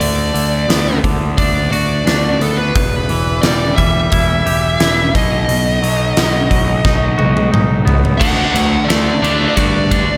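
Cathartic and dark, this brief cut from a longer quiet-loud alternative rock piece has a dark, distorted high-gain lead guitar carrying the melody over a clean, twangy electric guitar playing arpeggios through spring reverb and slapback echo. A fuzz-laden, overdriven picked bass and a huge, up-front arena drum kit with a fat snare and punchy kick drive the straight 4/4 groove, with a drum fill from 6.8 to 8.2 seconds. At 8.2 seconds a bright, scooped high-gain guitar riff joins, all set in a lush hall reverb that gives a big arena sound.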